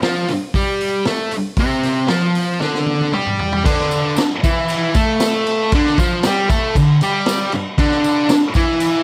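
A thick, bright fuzz guitar riff opens this raw, menacing garage rock excerpt in a straight 4/4, double-tracked and up front over a vintage acoustic kit with a punchy kick, medium-tuned snare, dark cymbals and a rolled-off top. A drum fill at 2.6 seconds leads into a new section at 3.7 seconds, where the chord moves from D minor to a D power chord. A jingly tambourine enters at 3.9 seconds, sitting close but in the background of a small room with light reverb.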